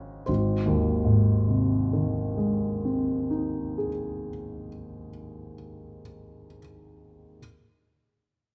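Dreamy and nostalgic, this brief fragment cut from a longer romantic nocturne in Ab major features a solo grand piano, clear, intimate and up front with audible action noise, unfolding in a slow, rubato 6/8 at 25 BPM across a span from Ab1 to Db5, set in a moderate recital hall reverb.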